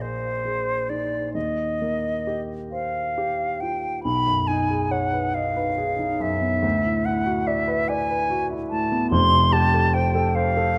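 In a rubato 6/8 at 43-50 BPM, this pastoral, luminous impressionist classical excerpt in Eb major pairs a pure, vibrato-tinged silver concert flute melody with soft attacks, played up front, over a dark, mellow vintage grand piano accompaniment of long sustain, its chords of added sixths and ninths moving through unexpected keys from 4.1 seconds, all captured by close, detailed microphones in light reverb.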